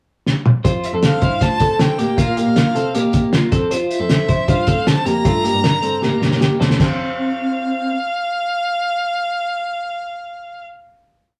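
A brisk indie backbeat at 156 BPM drives this short, breezy and bright jangly indie pop piece in F major, played on a cloth-damped, thuddy, lo-fi drum kit with a fat snare, tight kick, dark, muffled cymbals and a gritty, rolled-off top that opens with a fill at 0.3 seconds and fills again before the final chord at 6.8 seconds. Up front, a twangy twelve-string electric guitar rings out picked arpeggios doubled in sixths through a harmonic tremolo, while a focused, distant-sounding bowed violin sings a motif-based melody with vibrato and a rich cello traces a rounded, expressive bass line with portamento in the background. The rough rehearsal-room recording has a moderate small room ambience, with the strings sustaining alone to the end at 10.6 seconds.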